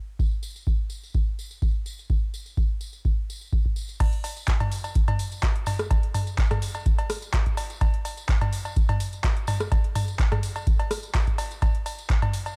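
This driving, gritty house fragment at 126 BPM in straight 4/4 opens at 0.2 seconds with a deep, up-front electronic kick drum and a jingly acoustic tambourine that sits close and dry. The kick has an analog, tape-warm weight, while the tambourine stays much quieter in the mix. At 4.0 seconds the drop arrives as a booming analog drum machine joins with metallic hi-hats, handclaps, cowbell, rim clicks, toms and crash cymbal. Its hats, toms, cymbals and percussion are dulled by low-pass filtering. The drum machine also sits up front, a little below the kick in level. The production is dark with little reverb, and the groove runs until the cut at 12.6 seconds.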